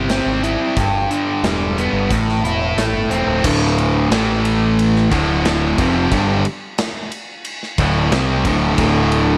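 Classic rock in D minor at 90 BPM, this brooding, swaggering excerpt from a longer piece is led by an up-front, double-tracked overdriven electric guitar riff, picked over a growling fingered bass that is bright, punchy and overdriven. A gated 80s drum kit adds bright cymbals, a medium-tuned snare and a punchy kick in a stony gated room, all set in light reverb and small room ambience. The chords move from C through G to Am before the second section at 3.4 seconds shifts to power chords on D5 and A5, landing on Dm.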